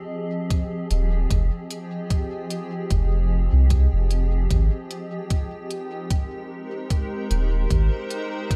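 A dry mix opens on a cloudy, granular cloud pad with a slow attack and its own built-in reverb, holding bright, blurred chords from F3 to Eb5 as the harmony moves from Fm7 to Abmaj7 at 4.5 seconds. This spacious, hazy ambient dub in F minor moves at 75 BPM in 4/4 with a light swing on the 16ths. From 0.5 seconds a muffled, pitched-down sampler kick and smooth, overdriven electronic hats, both carrying studio reverb, set the pulse, and a round, soft sub bass sits up front from 0.9 seconds, ranging from Eb1 to C2 in this cut from a longer piece.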